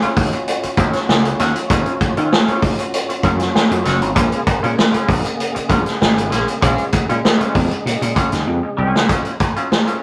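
A rough rehearsal-room recording with saturated tone and moderate reverb carries this sly, driving funk excerpt at 98 BPM in Eb minor, where an up-front vintage drum kit with a punchy kick and rolled-off top anchors the groove, a growly overdriven slap bass and a bright, clean semi-hollow guitar with tremolo move through the Ebm9 to Bbm7 change, a fat tonewheel organ with key click and slow rotary speaker sits in the background, a distant, mellow horn section with octave doubling cuts in at 6.6 s for a band accent, and a drum fill at 8.5 s leads to the point where bass and organ stop at 9.1 s as guitar and drums carry on.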